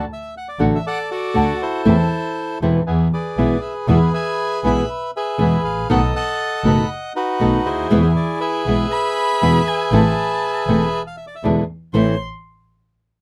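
A reedy, vintage-sounding bandoneon carries the melody in this tense, sultry tango excerpt, with a rubato feel, while a second bandoneon, boxy and up front, punctuates with stabs. Beneath them, a fingerpicked nylon-string guitar gives small, warm accompaniment, and a distant bowed double bass adds a biting, clear low line with light vibrato. At 8.9 seconds a dark, expressive violin enters with a soft attack, portamento and vibrato, adding a second line over the close, detailed sound and light reverb.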